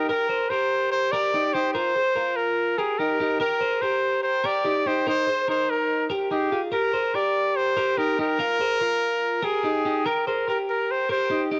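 A bright, smooth-topped trumpet carries a pop-style solo melody from the first moment, up front over a twangy, clean, compressed twelve-string electric guitar picking arpeggios with a cassette-tape tint. This breezy, nostalgic indie pop passage, cut from a longer piece, moves at 144 BPM in Eb major through Eb6, Bbsus4 and Abadd9 chords. A small room's modest reverb and the homespun character of a cassette recording frame the pair until the trumpet drops out at 11.4 seconds and the guitar at 11.6.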